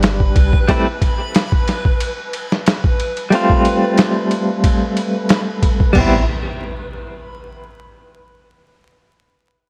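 A hypnotic, cinematic trip hop fragment opens with a clean, picked electric guitar, an electronic downlifter, a brief deep sine-toned 808-style bass and a boom bap sampler-style drum kit, all over a bed of vinyl crackle. Set at 91 BPM in 4/4 with a light 16th-note swing in A minor, the up-front guitar moves from Cmaj7sus2 to F, its compressed tone shaded by tremolo, a low-pass filter and tape echo. The drums sound gritty and pitched down, with a thumpy kick, a medium-tuned snare, crash and ride cymbals, and a tape-warm, small-room character that sits close to the listener. Behind them, a reversed, granular texture swells on a single detuned, bright note, dreamy and soaked in its own reverb. At 6.0 seconds the texture stops, the round, dark bass briefly returns under an Am7, and the guitar and drums fall away as an electronic impact carries the passage to 8.6 seconds.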